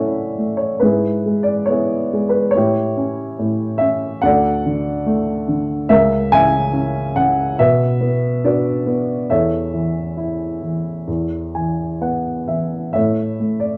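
A mellow, woody upright piano carries this tender, calm classical piece alone, playing with lyrical rubato at about 64-73 BPM in 4/4 and A major, spanning C#2 to G#5. Its boxy, up-front tone sits in a dark production with light reverb as the harmony moves from A through E/G#, A7, D, C#m6 and Bm. A piano fill from 11.1 to 13.0 seconds leads to a close on A at 13.0 seconds in this short section cut from a longer piece.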